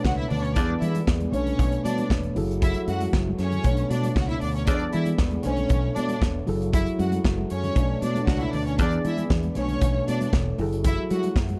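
Danceable and sultry, this disco groove in B dorian moves at 117 BPM in a straight 4/4, and this short cut is taken from a longer piece. A modern acoustic drum kit sits up front with a punchy kick, a medium-tuned snare and hi-hat in a pumping studio room, while a fingered electric bass, warm and direct, anchors the low end. A mellow tine electric piano supplies clean accompaniment through its built-in speakers, and a lush, focused string section carries a bowed second line with vibrato, heard close and clear. Behind them, a French horn section holds soft-attack sustained chords in a classical style with light vibrato, and very quiet congas with a thick, vintage, band-limited skin tone join from 0.1 seconds. The harmony cycles through Bm9, E7 and F#m9, all set in a small room ambience.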